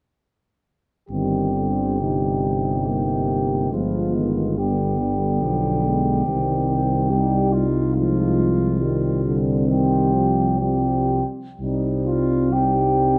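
This is a classical, hymn-like piece for brass band in C minor. It moves in a slow, rubato 3/4 at roughly 57-73 BPM, and the mood is solemn and melancholic. A mellow, distant flugelhorn carries the melody up front, with a roomy quality, while a close-miked French horn section sings a second line in the background. A smooth-topped euphonium and a warm trombone fill out the accompaniment beneath them, and a tuba with light vibrato anchors the bass prominently. The whole ensemble plays together from 1.1 to 13.2 seconds, moving from Cm/G through G7b9 and back to Cm before a brief new section begins at 11.6 seconds. A moderate scoring-stage reverb and a dark production give the brass a sombre glow in this short excerpt cut from a longer piece.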